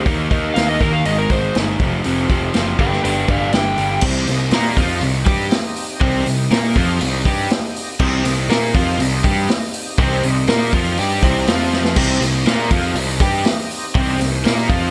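A growly, fuzz-drenched picked bass sits up front in this heavy, brooding blues rock and southern rock excerpt in C minor at 121 BPM, driven by a punchy vintage drum kit with a rolled-off top and a drum fill at 11.7 seconds. A double-tracked overdriven guitar riff runs throughout, while an overdriven slide guitar with analog delay carries the melody over Eb, Ab, F and G chords until the music settles on C minor at 4.0 seconds. Behind them, a thick, gritty tonewheel organ holds sustained chords through chorus vibrato and a slow rotary speaker, all set in light reverb.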